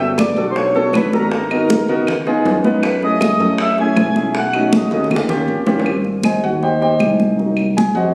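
A sunny, danceable stretch of Afro-Cuban jazz cut from a longer piece, with a mellow, reedy accordion carrying the melody up front until 5.1 seconds over a warm grand piano, a bright, punchy fingered electric bass, high-tuned congas struck with hard hands, tight bongos and woody, saturated claves. After a drum fill, the bongos drop out at 5.9 seconds and the piano takes a solo to the close as the chords move from Abmaj7 to Cm7b5. The sound carries light reverb and compression with the slightly roomy character of a phone recording.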